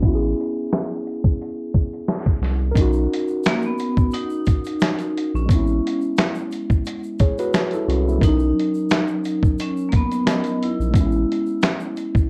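A cosy, mellow lo-fi hip hop excerpt opens with a filter sweep over muted, felt-like synth keys on soft major-ninth chords, a deep, saturated sub bass and a gritty, thumpy sampler-style drum kit of kick, snare, hi-hat and finger snaps, before a grainy egg shaker slips into the background at 2.8 seconds and a dark, ringing vibraphone takes the melody at 3.5 seconds, the whole mix carrying a worn, warbling cassette drift and moderate reverb.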